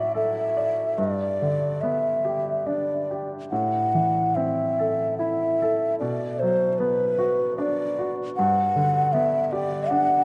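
A breathy, hollow bansuri carries the melody up front in this short excerpt of a Celtic slow air, its bamboo tone close-miked and touched with vibrato and tongued notes as it sings between B4 and F#5. Beneath it, a clear upright piano plays a woody accompaniment with short sustain from G2 to D5, sitting a little lower in the mix. The mood is mournful and full of longing, moving in a rubato 3/4 at around 70-80 BPM. The harmony drifts from D/A through G, Am and Bm before settling back on G near 8.4 seconds. A cathedral reverb with a 5.9-second decay gives the room a vast, wet sense of space, and the passage is cut from a longer piece, ending at 10.2 seconds.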